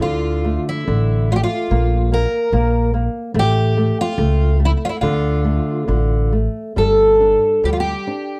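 A shimmering, octave-doubled twelve-string acoustic guitar carries the melody up front, fingerpicked with a slapback echo in this mournful, longing fado-style ballad in D minor, moving at a rubato 71 BPM in 2/4. Beneath it, a thumb-plucked flamenco guitar adds accompaniment with audible finger squeak, while a woody, growly pizzicato upright bass anchors the low end until 7.9 seconds. The dry, close 1970s-style studio sound keeps every part intimate as the harmony shifts toward a new section at 6.8 seconds, before the cut ends at 8.4 seconds.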